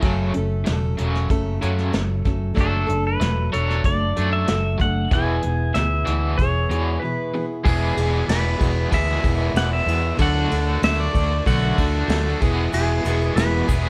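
A picked plugged-in steel-string acoustic guitar with finger squeak, a bright, overdriven electric guitar riff with tremolo, a dark, round fretless bass up front and a soft brush kit in a small room open this nostalgic, hopeful folk rock and heartland rock excerpt at 94 BPM in 4/4, joined at 2.6 seconds by a clean pedal steel melody played with fingerpicks and volume swells, and after a brief break at 7.0 seconds a reedy tonewheel organ with key click and slow rotary speaker and a grainy egg shaker enter very quietly at 12.7 seconds, all colored by light reverb and the warbly pitch drift of worn old cassette tape.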